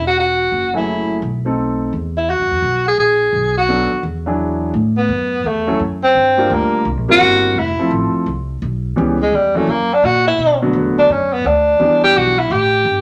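A tenor saxophone with soft-attack vibrato carries the melody over a woody, thumpy pizzicato upright bass from the first moment, and a concert grand piano enters at 0.7 seconds with intimate, naturally sustained comping full of audible action noise, in this relaxed, sophisticated small-group swing and bop excerpt at 170 BPM in E major, whose second section from 4.7 seconds moves through Gm7, C7 and Fmaj7 before closing on an open A7 under a moderate studio reverb.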